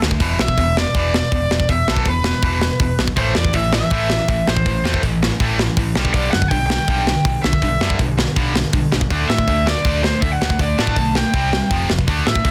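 A bright, raw garage guitar sits up front from 0.4 seconds, carrying an overdriven melody high above an urgent, angry punk rock charge in E minor at 162 BPM. Beneath it, a tight distorted guitar riff runs from the start and is joined at 3.2 seconds by a second distorted riff guitar set in the background, while a growly, punchy picked bass and a tight metal drum kit with a medium-tuned snare and rolled-off top drive the straight 4/4 pulse. The chords move from E5 through Am, G/B and D5, with light reverb in a dense, heavily limited modern master.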